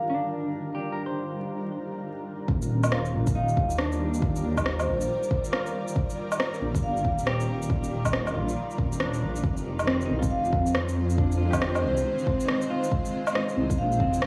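A swung 138 BPM future garage groove of deep, overdriven electronic kick with shaker, woodblock and rim click joins a rumbling, detuned saw bass at 2.5 seconds in this ghostly, wistful excerpt, under a blurred, cloudy granular pad pumping on Ebmaj9 then Fm7, a clean, fingered electric guitar with 12-bit grit and tape echo, and a ringing, metallic vibraphone melody that returns at 10.3 seconds, all wrapped in a gritty hardware sound with vinyl crackle and small-room ambience.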